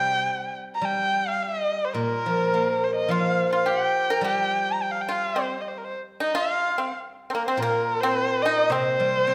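A dark, boxy erhu carries the melody up front, played by a single bowed voice with vibrato, soft attacks and expressive portamento. This is a tender, wistful piece of Chinese traditional chamber music in C yu mode, moving at 107 BPM in 4/4 with a rubato feel, and this short excerpt is cut from a longer work. Beneath the erhu, a steel-string zither plucked with fingerpicks supplies the accompaniment from Bb2 to C4, its tone ringing and silvery. At 3.1 s a pipa joins with a second line, bright, dry and percussive under its fingerpicks. The ensemble sits in a wet recital hall reverb with a 1.4 s decay, giving the music a concert-room bloom.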